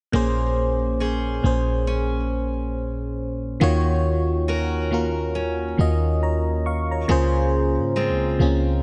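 A glassy, bell-like FM electric piano with chorus opens at 0.1 s alongside a deep, boomy, dark 808-style bass and a picked steel-string acoustic guitar playing delayed arpeggios with audible finger squeak, setting a moody, late-night R&B feel in Bb minor at 69 BPM with a swung 16th-note groove. The piano and sine-toned bass sit up front, while the softer guitar carries an auditorium-like warmth inside a light small-room reverb with a gently softened top end. In this brief cut from a longer piece, the harmony moves from Bbm9 to Ebm7 at 3.6 s and settles on Bbm9/Db at 7.1 s.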